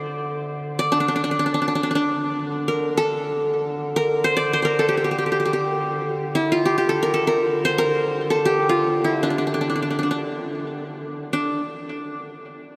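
A fingerpicked qanun opens straight away over a low duduk drone on D3, playing a hypnotic, soulful melody in free time in D makam ussak, moving between D4 and D5. The qanun sits up front with a bright-edged, triple-string sound and a tape echo, while the duduk stays distant and mellow, with light vibrato, a soft attack and scooped notes in a folk style. A huge ambient reverb with an 8.1-second tail soaks this dreamy piece, which is cut from a longer work; the duduk stops at 11.4 seconds and the qanun at 11.6.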